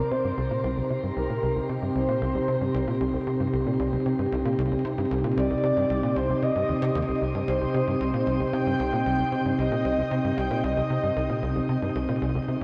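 From the first moment, a breathy, flute-like synth lead carries the melody over a sweeping, resonant pad of detuned sawtooth chords and a tight, punchy sequencer bass riff, all settled on C minor at 114 BPM in a straight 4/4. The lead's soft tone wavers with tremolo, vibrato, chorus and delay, while the vintage pad slowly evolves and warbles and the driving bass adds ring-modulated bite and plucky, decaying notes under a lush chorus. Bathed in a long shimmer reverb, this expansive, mysterious stretch of space music lets the lead drop out at 11.4 seconds, leaving pad and bass to continue until 12.6 seconds.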